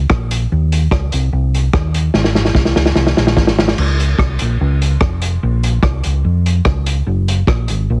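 A straight, bouncy 4/4 pulse drives this cheerful ska excerpt, carried by a hollow-body short-scale electric bass with a dark, round, amped tone and a vintage acoustic drum kit of kick, snare, rim click, hi-hat and crash, both sitting up front. The kit sounds lo-fi and muffled, with a tight kick, a medium-tuned snare and a rolled-off top in a small room, and a drum fill from 2.1 to 3.8 seconds leads into a repeat of the opening section. Light reverb and heavy multiband compression give the whole excerpt a radio-like sound.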